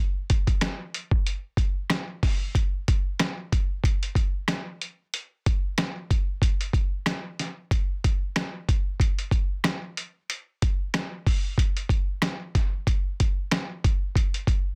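Hip hop with a nostalgic, confident mood, built entirely on a lo-fi sampler-style drum kit that enters at 0.3 seconds and runs until 14.6 seconds in this short cut from a longer piece. The kit sits up front with a thumpy kick, a medium-tuned snare, rim clicks and hi-hat, all pitched down, compressed, muffled and re-recorded in a small room, with a swung sixteenth-note feel. Light reverb surrounds a dense, heavily limited modern master, and the groove shifts into a new section at 2.5 seconds.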